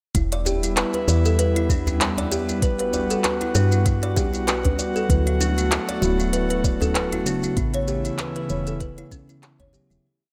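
A soft electronic kick and a crisp layer of closed hats, shaker and handclaps set a swung 16th-note groove at 97 BPM in 4/4, with a deep djembe in the background, for a mystical organic downtempo piece in E dorian moving through Em7, Gmaj7, Dmaj7 and A. A woody FM bass plays long gliding notes under an airy, breathy pad with chorus and sidechain pumping, while a bright kalimba repeats a delayed 12-step pattern that drifts against the bar. A mellow tine electric piano enters at 5.1 seconds with held quartal chords and syncopated pushes, and the piece fades out from 6.7 seconds in light digital ambience.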